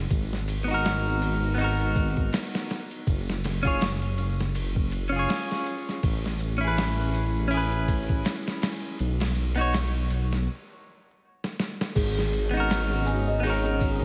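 Trip hop at 81 BPM in G# minor, dark and brooding, this excerpt sets a rumbling detuned saw bass and a gritty, pitched-down boom bap kit under tremolo-and-echo clean electric guitar and background maracas through G#m7, F#5 and Amaj7, breaks at 10.5 seconds, then adds a tinkling music box at 12.0 seconds, a breathy wind-like noise layer at 12.5 seconds and a deep chorused pad with 12-bit sampler grit at 12.6 seconds, all in a dreamy hall-reverb mix with vinyl crackle.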